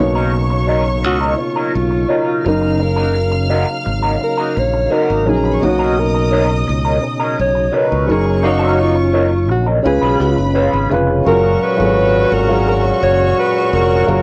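A straight 85 BPM soul groove in 4/4 sits in F# major, smooth and warm, cut from a longer piece and captured as a home cassette recording in a small booth. A bright, growly fingered electric bass with tube saturation anchors the bottom, joined by a dark, intimate baby grand with audible action noise, a fat, lightly overdriven tonewheel organ on slow rotary holding very quiet sustained chords, a lush bowed string section as a second line, and a slightly broken-up wah guitar riff that runs from 0.2 to 11.1 seconds. A jazz-style alto saxophone with soft attack and vibrato carries the solo melody from 1.1 seconds, and a tight, distant horn section adds stabs from 8.4 seconds as the band accents the move from F#6 to C#7 before settling on F#maj9.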